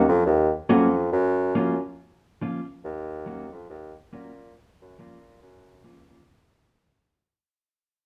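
A warm, up-front bassoon with light vibrato carries the low line in a classical style, while a dark, clean, fingered electric guitar plays compressed accompaniment over alternating Ebm7 and Gbmaj7 chords, giving this hypnotic, laid-back roots reggae fragment with its swung sixteenths the feel of a band playing live in a large studio room with moderate reverb, fading out across its 6.3 seconds.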